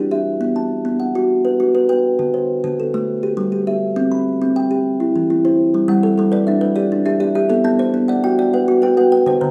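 A plucked, woody solid-board kalimba rings out in rolling arpeggios from the start, joined at 5.9 seconds by a brighter, hollow-box kalimba whose thumbnail-picked arpeggios sit a little lower in the mix, together weaving a rippling, hypnotic southern African traditional cycle in the mbira style, set in a straight 12/8 at 136 BPM over chords moving through Em/G, C, Em, G and Bm, all in a live-room sound washed with large studio reverb in this brief cut from a longer piece.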